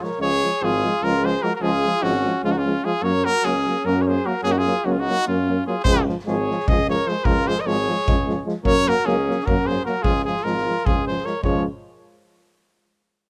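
Virtuosic and wild, this Balkan brass band piece in 7/8 puts a clear, lightly vibratoed trumpet up front on the melody while a mellow, soft-attacked flugelhorn carries a distant second line. A euphonium and trombone sit in the background with warm accompaniment, and a roomy tuba holds the bass from 0.2 seconds. A soft-mallet drum kit with a fat snare and punchy kick drops out after the opening moment and returns at 5.8 seconds, all under light reverb in this fragment of a longer piece.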